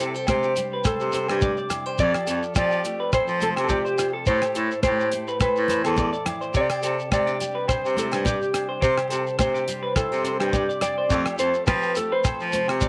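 A sunny, danceable highlife guitar band groove, cut from a longer piece, where a dark, clean electric guitar with analog chorus carries the melody over fingerpicked nylon-string accompaniment with audible finger squeak, twangy, slightly broken-up arpeggios from a lo-fi electric guitar with slapback echo, and a punchy, vibrato-laden baritone saxophone holding down the bass up front, while grainy shekere enters at 0.1 seconds and a damped 70s kit with tight kick, rim click and hi-hat joins at 0.3 seconds alongside ringing agogo bells and thick-skinned congas in a small room with light reverb.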